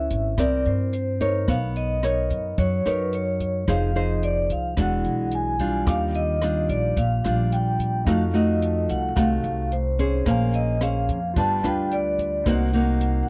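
Wistful and melancholic, this bossa nova excerpt at 109 BPM sets a ringing, metallic vibraphone melody with medium motor vibrato over fingerpicked nylon-string guitar and woody pizzicato upright bass, both up front, with a compact cocktail drum kit of hi-hat, punchy kick and rim click, while a clear, intimate concert grand piano with audible action noise and long sustain joins in the background at 5.9 seconds, all captured in a dry, close 1970s-style studio sound.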